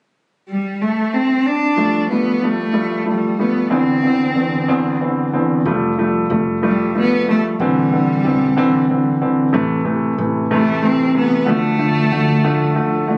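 Captured on a phone in a room with club reverb, moderate plate reverb and compression, this tender, romantic pop excerpt in 6/8 at 62 BPM sets a rich, bowed solo cello with vibrato up front from 0.5 seconds, joined at 1.8 seconds by a clear concert grand piano with long sustain over Fadd9, Cadd9/E, Am and Dm, while a punchy, foam-muted fingered electric bass sits in the background from 5.7 seconds.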